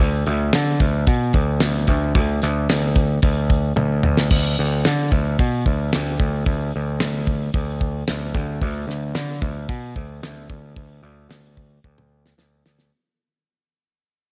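A straight 4/4 pulse at 111 BPM drives this swaggering, confident classic rock passage, cut from a longer piece and tuned slightly below standard to A4 = 435 Hz. An overdriven, picked electric bass opens at 0.0 seconds, growly and bright, sitting up front and moving between D2 and D3. A damped 70s acoustic kit joins at 0.3 seconds with a fat snare, a tight kick, hi-hat, crash cymbal and toms. The drums are dry and mid-forward with a rolled-off top. A drum fill leads into a repeat of the same section, and from 4.3 seconds the music fades out, closing on another fill. Both parts sit close and present in a room with light reverb.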